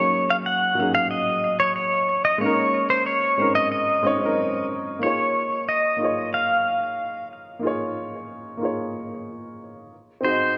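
A pedal steel guitar and a dark baby grand piano open this relaxed, wistful chillout excerpt together, the bright, twangy steel carrying the melody with fingerpicked slide lines and volume swells over mellow piano chords roughened by vintage 12-bit sampler grit and treated with delay. A filter sweep colours the piano through the first 5.0 seconds, as the harmony moves from Ab9sus4 to Bbm11, before the passage settles onto Db69 and closes on Ab7 at 9.9 seconds. Both instruments sit up front, with delay on each and a lush hall reverb.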